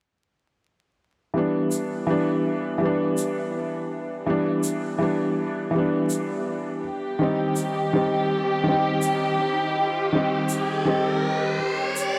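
Trip hop at 82 BPM in E minor, this hypnotic, smoky excerpt from a longer piece moves with a swung sixteenth-note feel and sits in a dreamy mix soaked in huge ambient reverb and vinyl crackle. A felt-muted upright piano enters at 1.3 seconds with soft, mellow accompaniment over an Em7 chord, its thin felt and audible action noise kept intimate and up front, colored by harmonic tremolo and tape echo. An egg shaker adds acoustic, small-room percussion beneath it. At 6.8 seconds the harmony shifts to C minor as a dark studio violin section arrives with sustained, bowed chords, woody in tone with vibrato and a soft attack. An electronic riser enters at 8.5 seconds and runs through the close of the passage.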